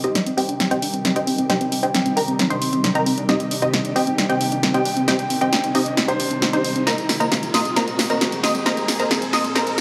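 A lush hall reverb and a small-room ambience frame this brief uplifting trance excerpt, which feels euphoric and emotional from its first beat. A detuned, sawtooth-based unison pluck carries the melody with a fast attack and decaying tail through tape echo and a filter sweep, while a bright concert grand piano plays a second line, its brilliant, polished tone passed through a low-pass filter and tape echo and likewise swept. Beneath them, a shimmering, ethereal pad holds sustained chords with a slow attack, granular octave-up sparkle, chorus and its own reverb, and a second unison pluck sits in the background spinning arpeggios through cassette tape coloring and echo. A dry, up-front analog drum machine drives the build-up with a continuous fill of hi-hat, punchy snare and tambourine. A very quiet electronic riser joins at 3.9 seconds, and the harmony moves from C minor to Abadd9 at 6.9 seconds.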